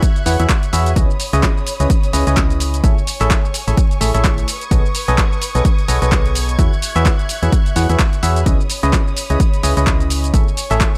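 A muted violin section opens the clip with veiled, lush sustained chords that pump under sidechain, alongside an overdriven, up-front kick and punchy, overdriven analog drum-machine handclaps, hi-hat and shaker, in a soulful, bittersweet slice of swung piano house cut from a longer piece. From 0.3 s a biting, percussive FM electric piano with chorus plays a riff, and a round, dark FM bass with a fast attack pumps in under the same sidechain. The chords move through E6/9, C#m9, Amaj7 and B13 in a digital ambience.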